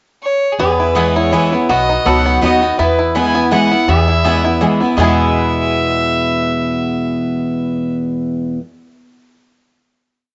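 A lone bowed fiddle opens with a short pickup at 0.2 s, earthy and smooth on top with light vibrato, before most of this driving, virtuosic bluegrass waltz arrives at 0.6 s. Up front, the fiddle spins a motif-based melody in balanced period phrases, while a bright dreadnought acoustic guitar with fresh strings alternates bass notes and full-bodied strums. A twangy, percussive banjo rolls three-finger arpeggios, a woody pizzicato upright bass walks up between roots and fifths, and from 1.0 s, further back, a mellow double-strung mandolin chops on the off-beats. Deep in the mix, a nasal, metallic lap resonator guitar played with slide and fingerpicks draws out a long guide-tone line. Every part except the bass carries a cassette-tape tint, a moderate spring reverb surrounds the group, and the homespun recording rolls off its highs before the band settles onto a final chord at 5.0 s.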